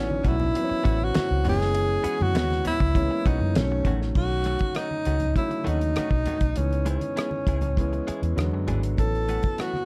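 Lush 1970s-style soul at 100 BPM in a straight 4/4, this short excerpt has a silky, bittersweet mood and a dark production with small room ambience. A breathy, close-miked tenor saxophone carries the melody up front with vibrato and a soft, whispered attack, while a foam-muted fingered electric bass sits forward with a round, punchy tone. Beneath them a dark concert grand piano supplies mellow accompaniment with deep bass and long sustain, and a clean, compressed electric guitar picks a riff in the background, recorded direct and touched with spring reverb. A damped drum kit with a fat snare, tight kick, rim clicks, hi-hat and crash keeps time with a rolled-off top, and low-tuned congas add very quiet, distant percussion from a large room. The harmony moves from A6 through F#7sus4 and B9 to C#m7 and E7 before settling back on A6 at 9.0 seconds.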